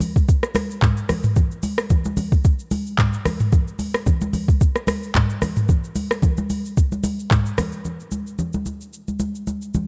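Dark production sits inside a digital ambience, giving this short amapiano excerpt a soulful, late-night mood. At 111 BPM in 4/4, the groove carries a light 55% swing on the sixteenths. An electronic R&B drum kit sits up front and plays throughout, with a soft kick, metallic hi-hats, handclaps, rim clicks, shaker and toms, all with a tape-warm sheen. Acoustic congas with a thick skin and medium tuning also play the whole way, sounding close and dry, and sit lower in level than the kit. The opening stretch to 7.9 seconds is a drop, after which a new section carries the groove on to the cut at 9.9 seconds.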